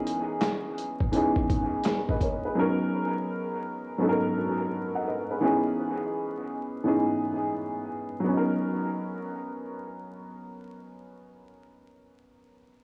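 A warm, woody upright piano, slightly detuned and treated with a low-pass filter and dub echo, carries this dreamy, cosy lo-fi hip hop excerpt in B major at 84 BPM with a 16th-note swing, moving through C#m7 and Bmaj7 while a gritty, compressed soul sampler-style drum kit with thumpy kick, snare, hi-hat and handclaps plays only from 0.1 to 2.4 seconds, all wrapped in plate reverb, echo and vinyl crackle.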